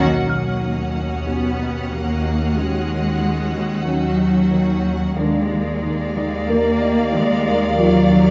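Steeped in the wet reverb of a scoring stage and dulled in the highs, this eerie, uneasy suspense film cue in Eb minor moves at 92 BPM in 4/4, built on bowed string sections: focused violins carrying the melody, a second violin line in the background, smooth violas, an up-front cello bass line with portamento, a very quiet cello riff, and a distant double bass section holding Eb2. Beneath them sit dark sustained French horn chords and a warbling, detuned organ-like drone with ensemble chorus, while a soft-attack high violin texture drops out at 4.8 s and a delicate, slightly out-of-tune music box tinkles from 0.3 s and returns at 6.8 s, as the harmony shifts from Ebm7 to Bb7/Eb after a full-band accent at the start.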